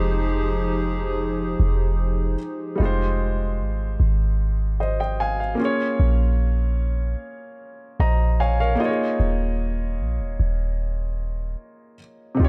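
A deep, boomy 808-style bass sits up front through this 12.5-second cut from a longer R&B piece, its sine tone striking with a fast attack and decaying darkly beneath the harmony. The mood is sensual and moody at a slow 75 BPM in a straight 4/4. An intimate grand piano accompanies throughout, natural in tone with audible action noise, and slips in a fill between 7.6 and 9.2 seconds. For the opening 2.8 seconds a hollow, flute-like pad holds soft sustained chords with a slow attack, its detuned voices thickened by chorus. The harmony moves from Fm9 to Bbm7 and then Eb9sus4, all set in a small room ambience with a dark, warm production.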